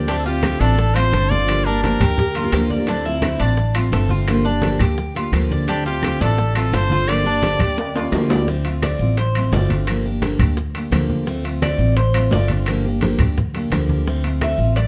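Set in a moderate studio reverb, this sultry, danceable excerpt of Cuban son and guajira in D minor moves at 172 BPM over Dm7 and Gm7 chords, with a bright, full-bodied dreadnought steel-string guitar picking an accompaniment and a metallic, double-strung tres playing arpeggios above a dark, thumpy pizzicato upright bass up front, low-tuned background congas, tight high-tuned bongos, ringing metal-shell timbales and very quiet woody claves, while a clear trumpet with vibrato, scooped notes and tape echo carries short melodic phrases, a fingerpicked nylon-string guitar adds a brief background line, and after a drum fill the tres takes a solo from 8.5 s.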